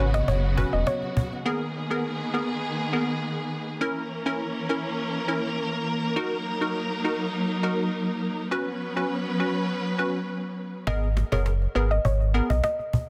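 Dancehall in G# minor at 102 BPM, this short cut from a longer piece feels sultry and tough, moving through chords such as F#sus4, G#madd9, A#dim and D#m. A string section carries sustained chords up front from the start until 10.8 seconds, its bowed ensemble tone smooth on top with vibrato and portamento. Underneath, a crisp, detuned wavetable chord stab with phaser adds bright, decaying digital accompaniment through to 12.6 seconds. The soft, round pluck melody, dark and gentle with chorus and tape echo, appears only briefly at the opening and returns at 10.9 seconds, when the deep sine sub bass with octave and the woody, hard-handed cajon with faint snares also come back. The mix has light reverb and studio ambience, finished with a dense, heavily limited modern master.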